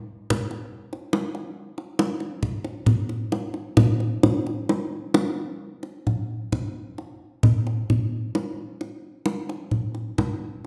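A kendang drum enters at 0.3 s and carries this short gamelan passage alone, its hard-handed strokes sounding tight, close and up front in a straight 4/4. The mood is serene and shimmering, and the drum sits inside the reverb of a recital hall. At 3.8 s the music moves into a new section that runs to the end at 10.7 s, as though lifted from a longer piece.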